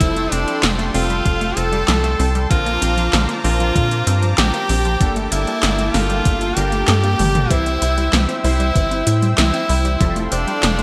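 An edgy tenor saxophone with light vibrato and delay carries the melody in this romantic, nostalgic synthwave piece, joined by a very quiet, shimmering string machine on a second line, a smooth, chorused analog pad pumping in the background, round, detuned analog pluck arpeggios, cutting electric grand piano stabs, a tight, punchy sequencer bass pumping up front, 1980s electronic drums with gated snare and toms, metallic hats, handclaps and a brief fill at 7.2 seconds, and an overdriven, thumpy electronic kick that stops at 10.1 seconds, all in a bright 1980s-style digital production.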